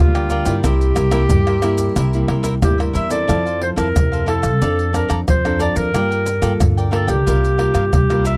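A breathy tenor saxophone opens with a brief solo over fingerpicked nylon-string guitar and woody, thumpy upright bass, joined almost at once by crisp picked cavaquinho and a tight, dry percussion section of maracas, pandeiro, tamborim and surdo, before a roomy, classical-style clarinet takes the melody up front at 2.6 seconds in this festive, sunny samba and choro fragment in F major at 91 BPM, captured with a close, dry 1970s-style studio sound.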